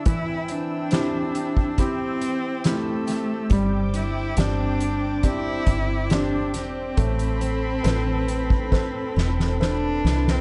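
Tender and hopeful, this short pop ballad fragment moves at an unhurried, straight pace. A single bowed cello carries the melody up front, its nasal, focused tone touched with vibrato, over a brilliant, polished concert grand piano that adds present accompaniment with deep bass and short sustain. Beneath them, a thick, warbling vintage sawtooth pad holds sustained chords with a slow attack, long release and chorus, while a woody, full-bodied jumbo acoustic guitar with old strings picks very quiet arpeggios. A soft-mallet drum kit sits up front with a punchy kick and fat snare in a big-room sound, and a round, foam-muted fingered electric bass joins at 3.5 seconds, adding a dark, punchy low end. The chords move from C/E to Gsus4 to Amadd9, and a drum fill arrives at 8.7 seconds, all within a dark, dry production.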